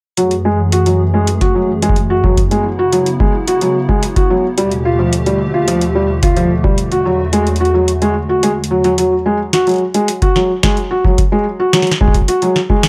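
A felt-muted upright piano sits up front in this eerie, cerebral IDM excerpt, playing arpeggios with a mellow, intimate tone, audible action noise, and a coat of 12-bit sampler grit, low-pass filtering and tape echo. Set at 109 BPM in 4/4 with a straight feel in F# minor, tuned to A4 = 438 Hz, the harmony moves through F#m9, C#m7, B7alt/D# and E9sus4 before settling on F#sus2. Underneath, a hollow, flute-like pad of detuned square, triangle and sine tones holds sustained chords with a slow attack, long release and ensemble chorus, stopping at 9.0 seconds. A booming analog drum machine supplies a crisp snare and metallic hi-hats throughout, while a deep electronic kick drops out at 6.8 seconds and returns at 10.2 seconds. The overall sound is dry and gritty, with a hardware character and light reverb.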